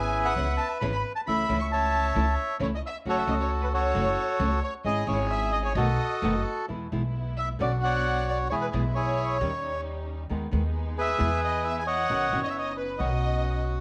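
A light reverb and studio ambience frame this short, passionate and playful tango excerpt, which moves in a rubato 4/4 feel. Up front, a reedy, mid-forward bandoneon carries the melody, joined by a thumpy upright bass plucked on gut strings with a woody, dark tone. Behind them, a bowed violin section with vibrato sings a smooth second line, while a lush ensemble of lower strings adds bowed stabs from the background. A small, fingerpicked nylon-string guitar enters at 0.4 s to fill in the accompaniment. Around 6.7 s the harmony turns from minor to major as the bandoneon presses on through the rest of the passage.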